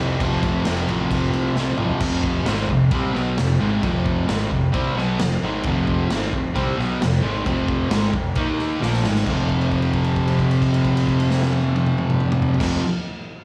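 A straight 4/4 pulse at 133 BPM drives this rowdy, swaggering garage rock cut, with a double-tracked, picked fuzz guitar riff up front moving from F5 through Eb5 and Absus2 and back to F5, while a round, overdriven fingered bass sits in the background. The raw garage drum kit, gritty and saturated with a punchy kick, medium-tuned snare, crash cymbal and toms, throws in fills at 1.6 and 8.8 seconds before a held note rings out from 9.3 seconds. The mix is dry, with a plain studio ambience.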